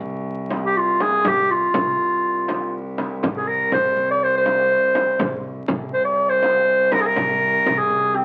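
An Arabic maqam ensemble excerpt in C maqam bayati at 122 BPM, longing and hypnotic, with a clear, roomy clarinet out front playing a classical-style solo line from 0.7 seconds over a dark, veiled cello drone on C2, bowed con sordino with light vibrato. A woody pizzicato upright bass sits in the background beside a crisp metal-shell darbuka heard from a distance, while a deep frame drum played with soft hands sounds close and dry from 0.5 to 7.8 seconds. Moderate studio reverb and the crackle of a very old 78 rpm record color the sound of this short passage, cut from a longer piece.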